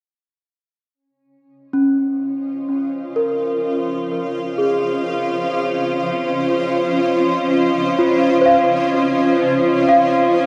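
A granular cloud pad sits up front in this luminous, weightless ambient excerpt, its blurred, detuned chords entering at 2.7 s with a slow attack and long release, shifting and evolving inside its own built-in reverb. Before it, a celesta arrives at 1.7 s with delicate, bell-like arpeggios, sweet in tone and struck by hard felt hammers, each note carried onward by an analog delay. The passage floats in free time in Db major, tuned to A4 = 436 Hz, resting on a single Dbmaj9 harmony. Both parts fade in together from 0.9 s. A wet echo chamber gives the mix a heavy wash of echoes, and the recording carries a cassette-tape character.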